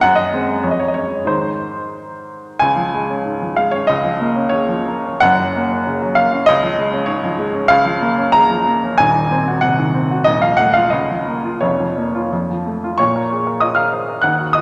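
A clear, woody upright piano carries this short romantic character piece alone, its polished tone sitting up front with a short sustain that keeps each chord distinct. Cut from a longer work, the passage moves in 2/4 at roughly 85-100 BPM with a supple rubato feel, and its mood is brooding yet bittersweet. It opens in D-flat major, with harmonies circling through Ab7/Gb, Db and Gb, before darkening into B-flat minor from 7.7 s. That turn brings Cdim/Eb and F7/Eb chords and a pull toward F, settling on Bbm at 13.0 s as the fragment closes. The piano spans from the deep bass to the upper treble, and a wet concert hall reverb with a long tail surrounds its present, direct sound.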